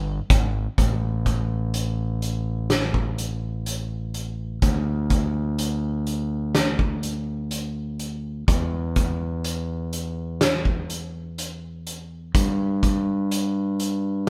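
Captured as a band playing live in one room with light reverb, this short post-rock cut from a longer piece moves at a slow 62 BPM in a straight 4/4, tuned to A4 = 443 Hz, with a cathartic, cinematic mood. A growling, overdriven fingered electric bass sits up front from the opening, bright and amped as it ranges between G1 and G2. A loose indie drum kit joins at 0.3 seconds, its roomy acoustic sound built on a fat snare, punchy kick and hi-hat.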